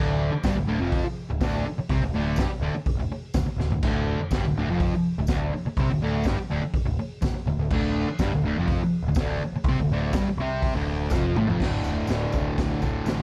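A double-tracked, up-front fuzz guitar riff on a D5 chord and a growling, punchy overdriven picked bass open this raw, rowdy fragment of straight 4/4 garage rock at 124 BPM, joined at 0.4 seconds by a gritty small-room drum kit with a boomy kick, high-tuned snare and dark cymbals that fills at 3.6 and 11.1 seconds, while a jingly tambourine sits in the background and the whole cut carries a light reverb and cassette-tape grain.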